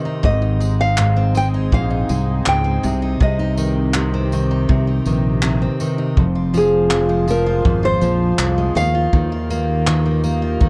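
A straight 4/4 pulse settles in at 0.2 seconds, when the drum kit and bass enter. The kit is roomy, with a punchy kick, handclaps and tambourine, and the fingered electric bass sits up front with a round, dark tone. This tender, reflective acoustic pop fragment, cut from a longer piece, moves through Ab, Cm, Fm and Ebadd9. A full-bodied jumbo steel-string guitar is picked up front as accompaniment, and a small, warm-sounding fingerpicked nylon-string guitar carries the melody. In the background, an ethereal, airy pad holds sustained chords with a slow attack, treated with ensemble chorus and its own reverb. A small room ambience surrounds the whole.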